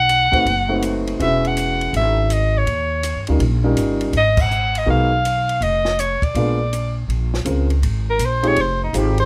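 A soprano saxophone sits up front with a soft attack, vintage vibrato and scooped notes, carrying the melody in this cool, swinging small-group jazz passage of swing and bop, cut from a longer piece. A woody, growly upright bass, plucked on steel strings and also up front, anchors the low end, while a warm grand piano supplies the accompaniment. A compact cocktail drum kit sits lower in the balance, recorded naturally in a tight booth, with dark crash and ride cymbals, hi-hat, a high-tuned snare and a punchy kick. The whole band hits an accent at 4.3 seconds, and from 7.1 seconds the saxophone moves into a solo over a new section as the harmony shifts to a minor ninth chord. Light reverb gives the acoustic group a gentle sense of space.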